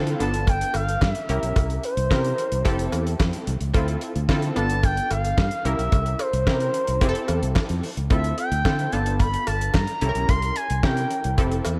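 Late-night and funky, this early-eighties boogie funk excerpt moves at 110 BPM in a straight 4/4, cycling through G9, C7b9, Fmaj9 and Dm9 chords. A damped 70s drum kit with a fat snare, tight kick, hi-hat and handclaps sits dry and dark up front beside a fingered electric bass, while a punchy, detuned sawtooth polysynth comp with a filter pluck and chorus fills in the harmony. A smooth, mellow portamento lead with vibrato carries the melody from 0.2 seconds, a close metallic cowbell ticks in the background from 0.5 seconds, and a lush hall reverb gives the mix a big arena sound.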